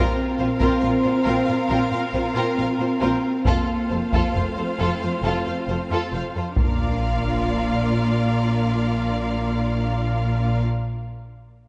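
Heard in a moderate concert hall reverb, this slow, majestic passage from an epic orchestral film score moves at 69 BPM in Bb major, from Bbsus2 through F to Bb. A lush violin section carries a smooth melody with vibrato, set over a dark, distant second violin line, expressive violas with portamento, background cellos, soft-attack sustained string chords and smooth-topped French horn chords, anchored by a rich bowed double bass section. Compressed, saturated taiko drums struck with heavy sticks play from 0.6 to 8.3 seconds, a huge sub drop rumbles in the background from 6.6 seconds, and an impact lands at 7.0 seconds, giving the cut an adventurous push.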